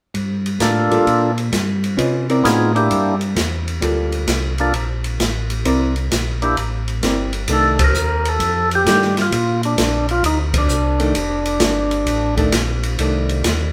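A wet, live-in-one-room sound frames this greasy, soulful soul jazz organ trio excerpt at 131 BPM in a swung 4/4 in F mixolydian, where a round, mellow tonewheel organ carries the bass line through a slow rotary speaker, an up-front acoustic drum kit with a boomy kick and medium-tuned snare keeps time, a percussive tonewheel organ with key click and slow rotary plays the melody from 0.6 seconds, and a dark, picked hollow-body electric guitar accompanies, with band accents at 7.7 and 10.5 seconds as the chords shift from Gm9 and C9 to F13 and Bbadd9.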